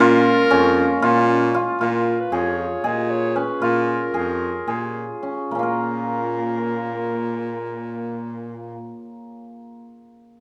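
Restless and hypnotic, this contemporary chamber piece, cut from a longer work, moves in 7/8 at roughly 212-236 eighth-note beats per minute in Bb minor. A shimmering, hammered cimbalom sits up front with ringing arpeggios, while a jazz-inflected baritone saxophone carries the bass with vibrato and scooped notes. A mellow, soft-attacked clarinet sings the classical-style melody above them. At the outset, a biting, intense bowed cello traces a second line in the background and a very quiet woodwind section holds sustained chords, both dropping away by 1.8 seconds. From 1.8 seconds the tempo slows until 5.5 seconds, when the harmony settles from Bbm7 to Bbm, and after clarinet and saxophone stop at 8.9 seconds the cimbalom rings on by itself. A moderate recital hall reverb lends the ensemble a gentle sense of space.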